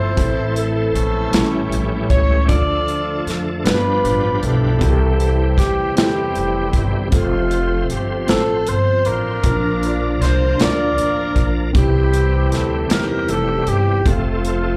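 A mellow horn section with light vibrato carries the melody up front in this slow, uplifting 6/8 gospel excerpt in F major at 52 BPM, over a worn, slightly out-of-tune tine electric piano with slapback echo, a bright, shouting tonewheel organ holding chords through a slow rotary speaker, woody, growly pizzicato upright bass and a tight modern drum kit entering at 0.2 seconds, all heard live through a club PA as the chords move from Am through Dm, G7 and C to close on F at 14.1 seconds.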